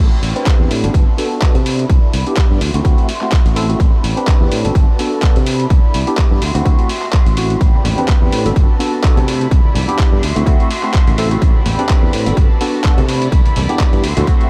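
A punchy, overdriven electronic kick sits up front in this funky, sensual slice of filtered disco house, layered and re-recorded in a large room, driving a 126 BPM groove in 4/4 with a light swing on the sixteenths. Beneath it, a dusty sampler-style soul kit adds gritty, compressed handclaps and hi-hat, overdriven and re-recorded in a small room, with the hats and cymbals pumping with the sidechain. A bright, growly fingered electric bass carries the low end, while a barky, clean tine electric piano, heard through its built-in speakers and treated with phaser, plays accompaniment over an A dorian loop of Am11, Gmaj9, Cmaj9 and D9. A studio violin section holds smooth, even sustained chords with light vibrato, roughened by vintage 12-bit sampler grit, and the strings, bass and electric piano all pump with the sidechain and sit under a low-pass filter that sweeps across the whole passage. 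At 7.6 seconds, very quiet, distant tambourine and hard-handed congas ring in from a large room, and light digital reverb frames this section cut from a longer piece.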